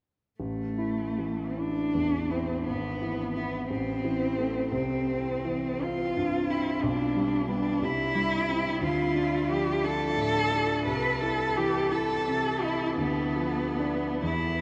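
A rubato 6/8 pulse at 45-60 BPM, counted in dotted quarters, carries this solemn, elegiac romantic classical duo in A minor, where a single bowed cello sings the melody up front with vibrato and portamento, expressive yet distant in tone, over a clear concert grand piano with deep bass and long sustain, both set in a huge, wet ambient reverb that evokes a vast, echoing space as the harmony moves through Am, C, G/B, Dm and Am/C to Bdim/D before the music breaks off at 14.6 seconds.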